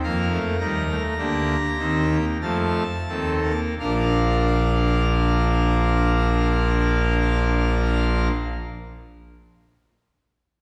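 Classical baroque-style four-part fugue fragment for solo pipe organ in Bb major, elegant and lively at a stately 42-54 BPM in 3/4, where full organ with mixtures sounds majestic and brilliant in a romantic voicing spanning Bb1 to Bb5, sitting up front yet heard from further back in a wet scoring-stage reverb as the tempo slows over the first 3.8 seconds and the harmony moves from F7sus4 to F7 before settling on Bb at 3.8 seconds.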